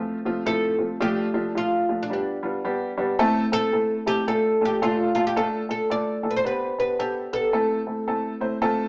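This soul excerpt runs at 110 BPM in 4/4 with a swung eighth-note feel, and its mood is passionate and urgent, set in D dorian. A worn, slightly detuned upright piano with a woody tone provides the accompaniment from the first moment, sitting present and up front in the mix. The oud enters at 0.5 seconds with the melody, its bright, plectrum-plucked double strings and fretless voice standing equally close to the listener. The oud carries a solo through the opening section, which gives way to a second section at 5.4 seconds. Underneath, the harmony moves through F, D minor, G and A minor, and a moderate studio reverb gives the two acoustic instruments a shared sense of room.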